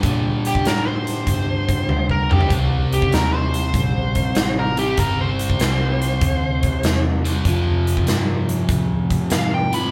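Blues rock power trio with a southern rock lean, this smoky, brooding swung excerpt sets a crunchy, double-tracked guitar riff and a dark, round, foam-muted fingered bass under a punchy big-room acoustic kit that drops a fill at 1.9 seconds, while from 0.5 seconds a nasal, overdriven lead guitar with a parked wah carries the melody up front, the band captured live in one room with light reverb.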